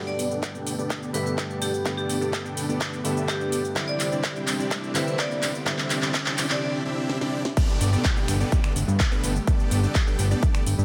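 A straight 4/4 pulse at 126 BPM drives this euphoric, anthemic festival progressive house excerpt in G major, built on a punchy, overdriven electronic kick up front and a layered house kit with cracking snare, metallic hats, snaps, claps, shaker and crash, filling through a build-up that moves from Gadd9 to Cadd9. A dark, mellow concert grand piano and a huge, detuned supersaw riff pump against the kick, the supersaw under a filter sweep, while a lush, very quiet pad sustains chords, a ringing hard-mallet vibraphone carries the melody with delay, and faint risers and downlifters sit beneath. After a brief break, the drop lands at 7.6 seconds on the return to Gadd9, and a fat, saturated analog bass enters shortly after.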